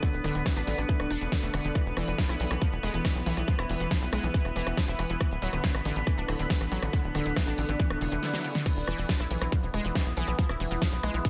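Psychedelic trance at 139 BPM in 4/4, intense and hypnotic, where a tight, up-front electronic kick and a big-room kit with a huge snare, crash, hi-hat and rim click drive a punchy, nasal sequencer bass, a lush detuned unison pluck riff with digital delay, a grainy tube shaker, a resonant overtone-sweeping drone and a deep, dark ambient pad in the background, both drone and pad pumping under sidechain, until the kick drops out for a drum fill from 8.2 to 8.7 seconds over a very quiet swell, all in a dense, heavily limited modern mix.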